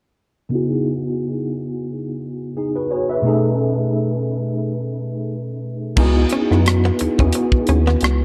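A sultry, soulful slice of neo-soul R&B cut from a longer piece, moving at an unhurried pace with a gentle sixteenth-note swing. A mellow tine electric piano opens alone at 0.5 seconds, its clean, direct voice softened by ensemble chorus and a low-pass filter that sweeps through the opening section as the harmony moves from C#m9 to B13. At 6.0 seconds the music returns to C#m9 and the groove arrives: a rubbery square bass sits up front with a bouncy, resonant pluck, joined by a tight, polished acoustic drum kit of kick, hi-hat, rim click and crash cymbal. A dark, picked archtop guitar, clean and compressed with a hollow-body tone, slips in quietly as a second line just after. Light reverb and a small room ambience frame the dark, warm production.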